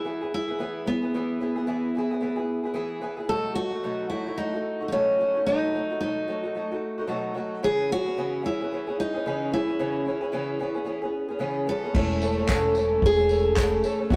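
A short, sunny, easy-going acoustic pop piece opens with a picked steel-string acoustic guitar carrying the melody, full-bodied and up front. Beneath it, a fingerpicked twelve-string acoustic guitar on old strings plays a boxy, shimmering, octave-doubled accompaniment. The tempo sits at 111 BPM in 4/4 with a light swing on the sixteenths, and the harmony moves from E through B7 and C#m7 to A/E. At 11.9 seconds the arrangement fills out: a cloth-damped, thuddy drum kit with a tight kick, dark cymbals, handclaps and tambourine comes in up front, a woody pizzicato upright bass settles on a low E, and a felt-muted upright piano adds a mellow, intimate layer in the background, its action noise audible. A separate jingly tambourine sits quietly in the background from 12.5 seconds. Moderate stone-room reverb and a rough rehearsal-room sound give the recording a loose, close-quarters character.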